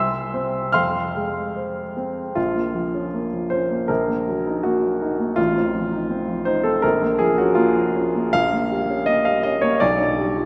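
A polished, up-front baby grand piano sounds in a wet church reverb with a long tail, giving this short solo passage a spacious, resonant presence. The romantic character piece moves in 2/4 with a flexible rubato feel, its passionate, bittersweet mood carried by a searching chord progression that spans from the deep bass to the high treble. After a brief opening phrase, a new section begins at 2.4 seconds and continues until the cut ends at 10.5 seconds.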